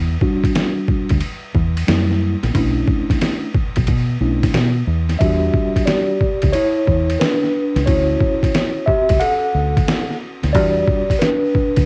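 A round, dark fingered electric bass opens this mellow, smoky jazz-hop cut, its foam-muted tone pushed through tube saturation and sitting up front. At 0.2 seconds a tine electric piano and a sampler-style drum kit join it, with the piano taking a clean, mellow solo across the whole passage, colored by cassette tape and plate reverb. The drums sound pitched down, compressed and muffled, with a thumpy kick, medium-tuned snare, hi-hat and ride roughened by overdrive and 12-bit grit. Swung sixteenths give the groove a lazy, head-nodding lean as the harmony moves from Em7 through F#7b9 and Bm11, back to Em7, then on to Dmaj9 before settling again on Em7. A moderate room reverb and a homespun cassette character wrap the short section, which is lifted from a longer piece.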